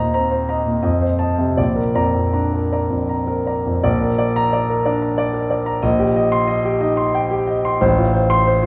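Romantic classical character piece for solo piano in Bb major, passionate and warm, moving in a flexible rubato 3/4 at around 78-94 BPM. The concert grand sits up front with a deep bass and an open tone, ranging from A1 to C6 and carried by a wet recital-hall reverb that suggests a church or concert hall. Harmony settles from Cm7/Eb and F7 onto Bb by 1.6 seconds, and a second phrase begins at 3.8 seconds before this short fragment of a longer piece closes on F/A.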